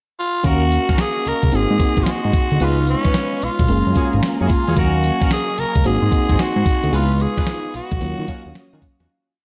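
Slick and punchy, this short new jack swing piece in Eb minor moves at 111 BPM, with a raspy, gritty tenor saxophone carrying a motif-based melody up front over a hard-swung, thumpy 8-bit drum machine, a fat, bouncy analog synth bass with ghost notes and chromatic approach notes, lush, dreamy FM electric piano chords with chorus and phaser, veiled con sordino strings sustaining in the background, and short syncopated horn stabs, all moving through an Ebm7–Ab7–Db9–Gbmaj9 progression in dark production with light digital reverb before fading out from 6.9 to 9.1 seconds.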